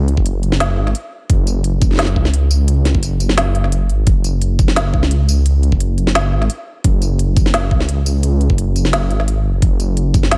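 A dark, detuned saw bass dominates this half-time drum and bass passage, rumbling deep between F#1 and C#2 with a beating, unison sawtooth tone layered with sine, a fast attack and long sustained notes. It sits up front from the opening second to the end of the 10.4-second clip, giving the music a heavy yet spacious mood. At 173 BPM in 4/4 with a half-time feel, an electronic kick drum enters at 0.2 seconds, a layered, knocking sound with overdrive and the close character of a small room. Alongside it, an organic electronic drum kit supplies a woody snare, crisp hi-hats and tambourine, also overdriven and placed up front, though sitting lower in level than the kick and bass. Tuned slightly sharp to A4 = 441 Hz and mixed with little reverb, the passage stays in a single section and is cut from a longer piece.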